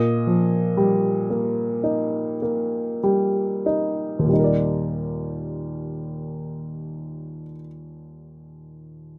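Peaceful and tender, this brief classical fragment of lyrical solo piano unfolds with rubato freedom, its dark, woody upright piano sitting up front under close, detailed microphones and light reverb, easing from an Ebadd9 voicing that slows over the opening bars into a mellow Ebmaj7 at 4.3 seconds.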